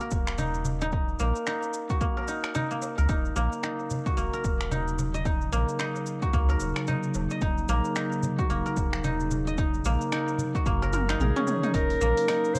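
Silvery, ringing guzheng arpeggios played with fingerpicks sit up front through this hypnotic, meditative organic downtempo excerpt in Eb minor at 111 BPM, colored by tape echo and a swung 16th-note feel over an Ebm7 chord. A punchy, overdriven electronic kick and a layered deep house kit of finger snaps, hi-hat, shaker and toms drive the groove, joined by a round sine sub bass with tube saturation and a soft-handed clay darbuka in the background, while a dark, warbling, nostalgic pad with chorus and sidechain pumping fades in at 3.6 seconds. After a drum fill at 10.9 seconds, a soft-attack classical-style clarinet with 12-bit sampler grit adds a brief melody from 11.2 seconds, all bathed in spring reverb and the texture of a home cassette recording.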